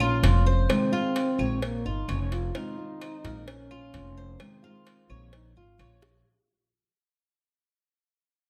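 A bucket-muted trombone carries the solo melody, its dark, veiled tone shaped with vibrato, scooped notes and a punchy, pop-style attack. This brief, danceable fragment of Cuban son and guajira moves at 130 BPM in a straight 4/4, swaying between Bbm and Fm7. Underneath, the Cuban tres picks mellow arpeggios on its doubled, metallic strings, some octave-doubled. From 0.2 seconds, a nylon-string guitar adds dark, fingerpicked classical accompaniment with audible finger squeak. An up-front pizzicato upright bass gives a thumpy, gut-strung low end. Woody claves sit in the background in a live room, while tight, high-tuned cowbell and bongos stay close and dry, with a drum fill at 6.0 seconds. The whole passage fades out under a light reverb.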